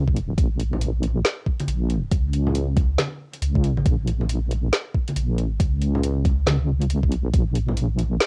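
A swung, half-time 4/4 groove drives this brooding, meditative fragment of deep dubstep, where a dark, detuned sawtooth-and-sine wobble bass, thickened by chorus and tube saturation, sits up front beside an overdriven, knocking electronic kick and a garage kit of woody snare and metallic hi-hats carrying cassette-tape grit, while low-tuned, thick-skinned, band-limited congas struck with hard hands arrive at 0.7 seconds trailing dub echo, in a dry room captured as a home cassette recording.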